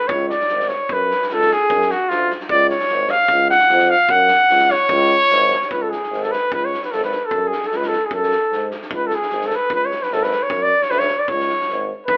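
Heard through a narrow, telephone-like filter, this fiery, virtuosic Balkan brass band plays live in a stone room with a moderate reverb, in C# phrygian dominant at 150 BPM in a swung 2/4. A clear trumpet with light vibrato and a soft attack carries the melody up front, taking a solo through the first 5.7 seconds, while a warm, distant tuba holds the bass and a loose acoustic drum kit with a punchy kick and fat snare keeps the beat. A mellow flugelhorn enters with a second line at 12.1 seconds, just as this excerpt from a longer piece cuts off.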